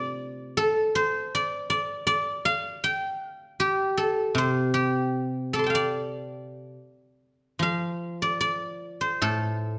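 Longing and contemplative, this short passage of Chinese traditional solo plucked-string music features a lone guzheng in the D yu mode, moving freely in rubato around 70-80 BPM in 4/4. Played with fingerpicks, the acoustic guzheng sits up front with a silvery, ringing tone that spans from low to high register, and a new section begins at 7.6 seconds before the fragment ends at 9.8 seconds. A moderate recital-hall reverb gives the notes a gentle sense of space.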